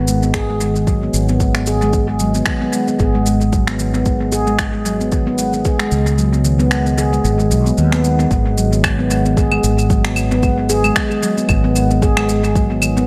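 Organic downtempo in G# minor at 113 BPM, this meditative piece moves in 4/4 with a gentle swing on the sixteenths, and it is cut from a longer piece. A handpan carries the arpeggios, its nitrided steel struck with soft fingertips for a ringing, mid-forward tone that sits up front, shaded by a low-pass filter and tape echo. Beneath it, a mellow fretless electric bass gives a dark, round, direct-amped foundation, colored with analog chorus and sidechain pumping. The percussion layers an electronic shaker, finger snaps and claves with analog delay, while an electronic kick drum adds a deep, tape-warm pulse that drops out from 6.2 to 8.3 seconds before the second section begins. Light reverb and an echo-heavy mix give the whole a spacious, hypnotic calm over a steady G# minor harmony.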